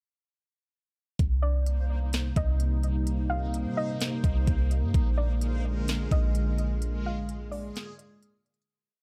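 A deep, boomy 808-style bass sits up front in this melancholic, spacious cloud-rap piece, its long sub-bass notes following the kick with pitch slides, beside an overdriven trap kit whose knocking kick, sharp snare and crisp hats play a sparse half-time beat with fast hi-hat rolls. A moody, detuned analog pad enters at 1.9 seconds with chorus and sidechain pumping, while a soft, round pluck repeats a sparse looping melody through chorus, digital delay and a low-pass filter, and a faint reversed, granular texture swells in its own reverb. The piece fades from 6.8 seconds, with the bass dropping away just before a closing break at 7.8 seconds.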